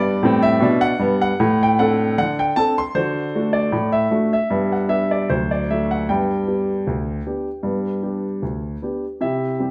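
Set in a studio with a wet reverb and heard from somewhat further back in the room, the grand piano still comes across as warm, present and polished. This is a cheerful, lively ragtime piece for solo piano in G major, moving at 77 BPM in 2/4 with a light swing on the sixteenth notes. The piano covers a broad span from D2 up to C6 and plays alone for the whole 9.7 seconds. The harmony stays close to home, moving between G and D with a D5/A chord early on, before turning to C at 9.2 seconds. Cut from a longer performance, the passage feels like a bright snapshot of an ongoing rag.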